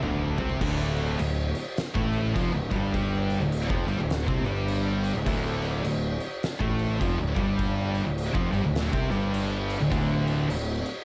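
Stoner and doom metal in D minor at 103 BPM with a swung 4/4 feel, this ominous, hypnotic excerpt opens with a drum fill on an oversized, low-tuned acoustic kit, up front with a punchy kick, fat snare, dark cymbals and toms in a bright, pumping stone room, as two dark, fuzzy picked guitars sit in the background beneath a bright, double-tracked high-gain guitar, all three riffing from the start and settling onto the Dm chord at 0.6 seconds while an overdriven, fuzzy picked electric bass growls up front under light reverb.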